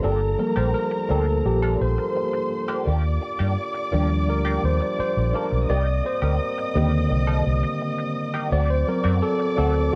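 A worn, slightly out-of-tune tine electric piano leads throughout this 85 BPM soul excerpt in G minor, its lightly overdriven tone sitting up front over a silky, bittersweet progression from Gm7 through Ebmaj7 and Cm7 to D7. A round, punchy muted electric bass anchors the low end, while a clean, compressed electric guitar plays a riff colored by wah and subtle chorus. Behind them, a veiled, con sordino string section carries a second line and a mellow French horn section holds sustained chords, captured as a dry, close 1970s-style studio recording with small room reverb.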